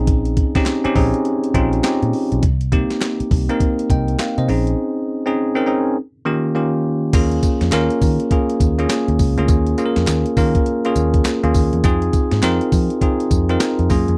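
New jack swing R&B at 102 BPM with a bouncy, slick swung feel, built on a bright, bell-like tine electric piano up front moving through Bbm11, Cm7 and Eb9sus4 chords, a dark, round, foam-muted picked bass, a gritty, compressed breakbeat kit with thumpy kick, handclaps, tambourine and crash, and a very quiet, crisp group handclap entering at 0.7 seconds, all captured in a dry, close 1970s-style studio sound.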